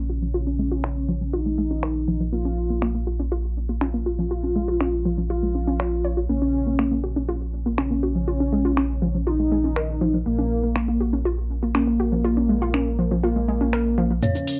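A thick, bold unison saw lead carries the melody through this driving, cinematic melodic techno excerpt in Bb minor at 121 BPM, over a deep, rumbling detuned saw bass held on Bb1 with tube saturation and a warbling, lo-fi chorused pluck whose arpeggios move through a filter sweep. A punchy, tape-warm analog drum machine enters at 0.8 seconds with low-passed finger snaps, hi-hat, shaker and toms, and closes with a drum fill at 14.2 seconds as an eerie, inharmonic FM bell sounds a single Db5. Cassette tape and analog delay color the lead and pluck, and a moderate studio reverb surrounds the home-recorded mix.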